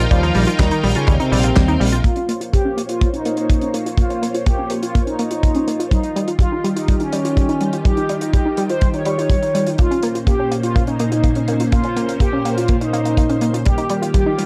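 A lush string machine holds sustained chords as a round, detuned analog pluck spins arpeggios through a chorus and analog delay, opening this nostalgic, danceable italo disco excerpt on a Bbsus2 chord. A bright fingered electric bass, shaped by an envelope filter and tube saturation, plays only until 2.0 seconds. At that point the harmony settles into a loop of Bbmadd9 and Ebadd9, and a filter sweep takes hold of the arpeggio from then to the close. Across the whole passage a bold, fat analog synth brass carries the melody with vibrato, chorus and delay, its wave-folded tone leaning dark. Underneath, a tight, up-front kick anchors the drums, with a damped 70s kit adding handclaps, hi-hat and a fat snare set low in the mix. The sound is dry and gritty, with the hardware character and tape hue of a cassette recording.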